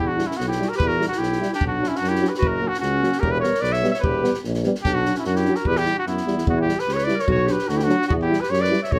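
A trumpet carries the melody up front from the first moment, joined by a clear, present clarinet on a second line and a distant, roomy tuba on the bass, in this bittersweet, virtuosic Balkan brass band passage in a straight 2/4, cut from a longer piece. From 0.2 seconds, a dark trombone with light vibrato and a warm euphonium sit in the background as accompaniment, while a compact, dry cocktail kit adds a punchy kick and a high-tuned snare. The band plays live together in a small room with moderate reverb, and a new section begins at 6.5 seconds.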